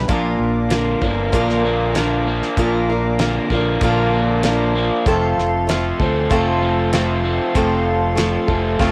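At a steady 96 BPM in a straight 4/4, a damped 70s drum kit sets an open-road pulse, its dry, fat snare and tight kick joined by hi-hat from 0.1 seconds. This short folk rock and heartland rock fragment feels hopeful, moving from a Bb chord to F at 5.1 seconds, tuned slightly low to A4 = 438 Hz. Up front, a picked old ladder-braced acoustic guitar carries the accompaniment with a boxy tone and cassette tape coloring, while a fingered electric bass sits close and round beneath it. A crunchy overdriven guitar, double-tracked, plays a riff, also carrying the cassette tape texture. In the background, an accordion holds reedy, sweet, airy sustained chords with a light tremolo tuning, and the whole take has the homespun studio ambience of a home recording on cassette.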